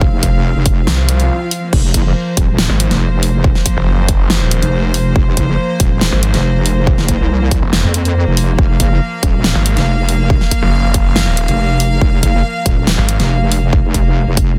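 A dense, heavily limited modern master with digital ambience frames this heavy, menacing excerpt of half-time wobble dubstep at 140 BPM, where a saturated, chorused wobble bass and a snarling, growling sawtooth bass with distortion, entering at 0.9 seconds, both sit up front and churn low in the register. A punchy electronic kick and a big-room dance kit with a huge snare, hi-hat and crash cymbal drive the groove, while a clear, floating bowed string section holds sustained chords beneath them, pumping with sidechain. Early on, a brief electronic swell sounds in the background from 1.1 seconds, leading into a short break at 1.3 seconds, in a tuning of A4 = 438 Hz.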